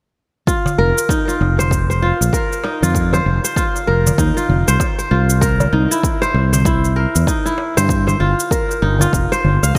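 A bright, 1980s-style digital production with a moderate plate reverb gives this short cut from a longer organic downtempo piece a glossy, spacious sheen. At 97 BPM in 4/4 with a gentle sixteenth-note swing, the mood is hypnotic and meditative. An up-front acoustic kora, fingerpicked and ringing, carries the arpeggios through a delay, moving over F5, C7 and Gm7 harmony. Beneath it, a fretless electric bass enters at 0.8 seconds with a growly, amped tone that sits forward in the mix. A punchy, layered electronic kick and a produced shaker, both overdriven and set in studio reverb, drive the groove from 0.5 seconds. A small metal-shell darbuka, played with soft hands in a small room, adds crisp, high accents in the background.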